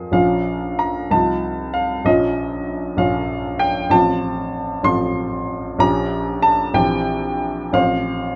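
A close, detailed recording with light reverb captures a clear, present grand piano alone in this brief excerpt of a passionate romantic character piece in 6/8, its rubato phrasing ranging from deep bass to high treble as dark minor harmonies give way to a brighter major resolution from 3.9 s.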